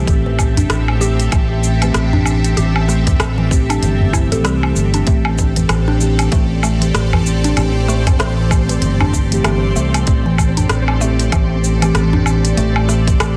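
A dense, heavily limited mix with light reverb frames this earthy, hypnotic organic downtempo piece in A minor at 96 BPM with a 16th-note swing, where a round, up-front fretless electric bass and a tight electronic kick anchor muted felt-like synth keys with chorus and tape echo, a tense bowed-like drone with phaser, a woody mallet-like synth pluck playing arpeggios, smooth hats, cabasa, rim click and woodblock from an organic electronic kit, and a very quiet udu, all resting on a single Am7 chord, while a twinkling granular texture enters in the background at 5.5 seconds.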